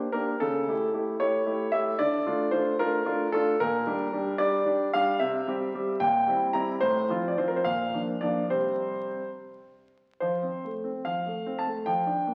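A clear concert grand piano plays alone and up front throughout this short passage cut from a longer classical-period sonatina. The mood is graceful and cheerful, with a flexible, rubato feel in duple metre. The instrument has a natural tone with a deep bass and long sustain, set in a wet recital hall reverb. The harmony moves from A7/C# to Dm, then through Gm/Bb, C and F/A before a new passage opens on F at 10.2 seconds. The whole sound carries the crackle of a very old 78 rpm record, giving it an aged character.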